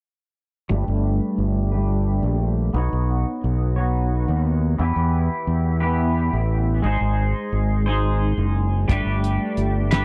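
Hazy and kaleidoscopic, this psychedelic rock passage moves at a slow 59 BPM in a straight 6/8 and is cut from a longer piece. A twangy, clean electric guitar plays a picked, compressed riff from 0.7 seconds, double-tracked and colored by harmonic tremolo and a low-pass filter, with a filter sweep running across its whole span. Beneath it, a growling fingered electric bass, overdriven and punchy, holds the low end from the same moment. The chords move from Gadd9 through Badd9, Em and Ab before returning to Gadd9. A cloth-damped drum kit of hi-hat, kick and snare arrives only at 8.9 seconds, thuddy and dark with a fat snare, tight kick and rolled-off top. The sound is a dry, close 1970s-style studio recording in a small room, with all three parts up front.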